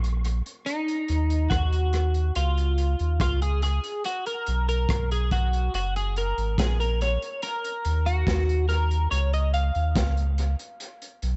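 Roots reggae in an uplifting, laid-back mood, this excerpt pairs a deep, round sub bass with a gritty, saturated breakbeat kit (high-tuned snare, tight kick) soaked in dub echo, while a clean, chorused twelve-string electric guitar, also echoed, enters at 0.7 seconds to move through D#m, C#, G#m9/B and F# in a lightly reverberant, dark-topped mix.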